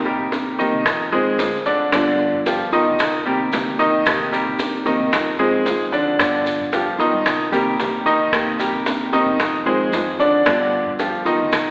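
Heard through the narrow, AM-radio sound of a church or concert hall, with a long, wet recital-hall reverb, this short cut from a longer piece is a danceable, sultry slice of Cuban son and guajira in a straight 4/4. A bright baby grand piano sits up front, its brilliant, natural arpeggios ringing with long sustain over a cycle of Cm7, Fm7 and G7 chords. A full-bodied nylon-string guitar supplies fingerpicked accompaniment with a deep classical tone, the squeak of fingers on strings audible. In the background, an upright bass plays pizzicato with a woody, dark, thumpy steel-string tone, while tight, high-tuned bongos struck with hard hands carry a compressed, saturated edge. Grainy, mellow maracas with a vintage, band-limited character join at 0.3 seconds. The guitar stops at 11.6 seconds, while the other parts play through to the cut at 11.7 seconds.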